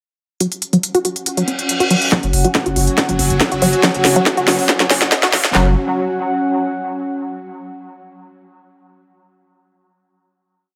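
Hypnotic and driving, this short, complete piece of peak-time techno in straight 4/4 opens at 0.4 s with a tight sequenced synth repeating a detuned sawtooth step pattern of 16 steps, plucked through a filter sweep and coloured by chorus, phaser, tube saturation, dub echo and sidechain pumping. Up front, an electronic drum kit plays programmed closed and open hats, with smooth hats pumping against the sidechain, and a cracking backbeat snare, while a lo-fi, nostalgic pad warbles in with slowly shifting, mellow chords under chorus and its own reverb. A reverse cymbal and riser sit in the background as transition effects. At 2.1 s the build begins: a second kit, tape-toned and re-recorded in a small room, adds a punchy four-on-the-floor kick, claps and snare through high-pass filters with a drum fill, and a thick, saturated sine sub bass rumbles between the kicks. A swarming, tense drone of detuned, ring-modulated, wave-folded, granular tones thickens the build, before the pad carries the final chord from 5.5 s under a light reverb.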